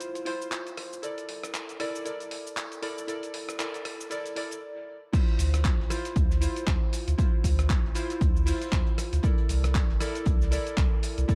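A swung 4/4 groove at 117 BPM, its 16ths pushed to 58% swing, carries this smooth, deep house passage in D minor, cut from a longer piece. A gritty, compressed sampler-style soul kit of crash, handclaps, hi-hat, rim click and shaker runs throughout, high-pass filtered and re-recorded in a large room. Beneath it, a round, mellow sine sub bass pumps to the sidechain. Above, detuned square- and sawtooth keys play wave-folded stabs with chorus, dub echo and a low-pass filter sweep, moving between Dm9 and C13. The opening build-up halts with a stop at 4.6 s, and at 5.1 s the drop brings in a punchy, overdriven electronic kick placed up front, along with a very quiet, muffled, cloth-damped kit whose fat snare and hi-hat carry a lo-fi, small-room character. Digital ambience and dark, warm production round out the sound.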